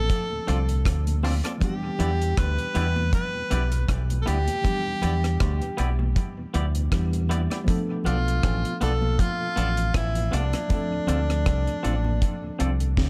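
Longing and smooth, this lovers rock reggae excerpt moves at an unhurried 79 BPM in 4/4 with a gentle swing on the sixteenths, drifting from Dm7 to Em7, then Bm7b5 and back to Dm7. A breathy tenor saxophone carries the melody between D4 and B4, intimate and whispered with a soft attack and light vibrato, trailed by tape echo. Underneath, a deep fingered electric bass sits up front with a dark, round tone, and a dry reggae drum kit with a high-tuned snare, tight kick, rim click and hi-hat joins at 0.1 seconds alongside very quiet, thin-skinned congas. A worn, slightly out-of-tune tine electric piano stays in the background with dub echo, while a tonewheel organ murmurs very quietly through a slow rotary speaker, key click audible. From 0.5 seconds a twangy, compressed electric guitar adds clean stabs, also touched with dub echo, all set in a studio ambience.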